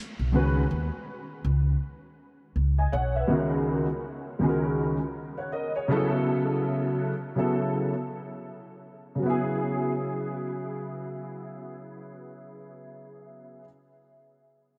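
A swung 16th-note groove at 81 BPM in 4/4 sets up this cool, nocturnal hip hop excerpt in C# minor. A pizzicato upright bass with gut strings and a woody, thumpy tone sits up front from 0.2 to 3.2 seconds, while a dark, mellow baby grand piano, smooth and vintage with long sustain and an ensemble chorus, carries the chords through to 13.7 seconds, moving from B6/9 and F#6/9 over C# to B7sus4 and settling on C#m7. A huge ambient reverb soaks the mix in a dreamy haze.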